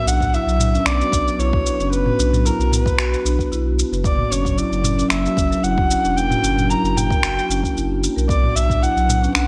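Organic downtempo at 113 BPM in B harmonic minor, cut from a longer piece, with a mystical mood, where an intimate, up-front kamancheh carries the melody with an airy bow, light vibrato, portamento and delay over a round sine sub bass and a kit of finger snaps, shaker and toms in gated reverb, while a deep electronic kick joins at 0.2 seconds, woody marimba arpeggios echo through delay, and a warbling, nostalgic lo-fi pad with 12-bit grit pumps in the background across a Bm to F#7b9 progression, all framed by bright 1980s-style digital production.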